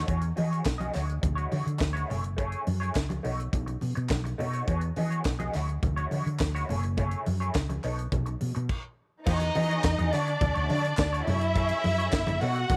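A light reverb and a studio ambience frame this glamorous, danceable disco excerpt in E major, moving at 104 BPM in a straight 4/4. A tight funk drum kit sits up front with a high-tuned snare, tight kick, hi-hat and crash. Beside it, a woody fretless bass with a round, hollow-body tone is bathed in lush chorus. An electric guitar through a small old amp adds slightly broken-up, lo-fi, compressed picked accompaniment with wah. Ringing congas stay in the background, and a very quiet group handclap adds a hollow, dry human touch. The harmony cycles through E69, Dmaj9#11, F#m9 and B9, and after a brief stop from 8.7 to 9.3 seconds, a studio violin section enters up front with expressive vibrato, bowing a close, lush second line over the returning chords.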